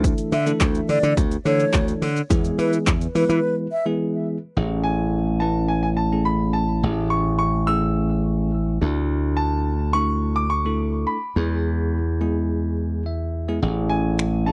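Carefree and summery, this dance-pop excerpt opens on a drop where a punchy, overdriven analog drum machine of kick, hi-hat, handclaps, finger snaps and shaker drives a bright slap bass and a bell-like tine electric piano, both pumping with sidechain, while an airy, hollow concert flute with vibrato and tape echo carries the melody. The drums fall away at 3.4 seconds for a break, and from 4.8 seconds a clear, polished baby grand piano takes over the melody high up with tape echo, over chords cycling through Dsus2, E and Amaj7. The electric piano adds a short fill at 12.8 seconds, all within a dry, close 1970s-style studio sound.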